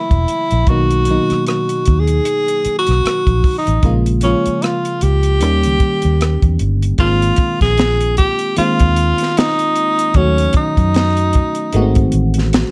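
R&B with a neo-soul lean, this sultry, smooth excerpt moves at an unhurried 76 BPM in 4/4 with a swung sixteenth-note feel. A clear tenor saxophone carries the jazz-style solo melody up front, its light vibrato and scooped notes giving the line a smooth top. Beneath it, a glassy FM electric piano supplies the accompaniment with a bell-like attack and decaying tones, softened by chorus and plate reverb. A vintage muted fingered electric bass sits up front with a round, punchy, foam-muted sound, while a tight, dry funk drum kit of hi-hat, kick, rim click and a high-tuned snare keeps the groove crisp. The harmony opens on F#7 and moves through Bmaj7 before a second section arrives at 7.0 seconds on G#69, closing on G#7b9, all within a dark production touched by light reverb.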